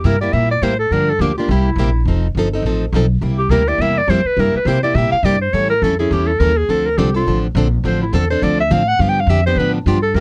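A brisk swung pulse at 208 BPM drives this charming, playful snippet of acoustic string swing in C mixolydian, cut from a longer piece, with a clear clarinet soloing up front through the whole 10.2 seconds, its light vibrato and scooped notes giving the jazz line a cheeky lilt. Beneath it, a boxy picked acoustic guitar, complete with finger squeak, comps through changes like C7, F7, A7 and G7, while a thumpy pizzicato upright bass with dark, woody gut strings anchors the low end. Light reverb and a cassette-tape sound lend the whole a homespun, vintage intimacy.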